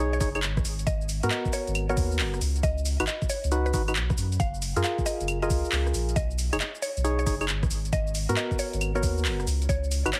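UK garage in a swung two-step groove, soulful and late-night in mood, this is cut from a longer piece and moves through lush ninth chords throughout its 10 seconds. Hollow, mellow organ stabs with chorus, cassette-tape grit and dub echo sit up front beside a thick, saturated sub bass, while a woody, round mallet-like pluck carries the melody with its own chorus and dub echo. An overdriven knocking kick and a garage kit of metallic hats, claves, handclaps, rim clicks and shaker share a small room ambience, and the whole mix has light reverb and a heavily compressed, radio-like finish.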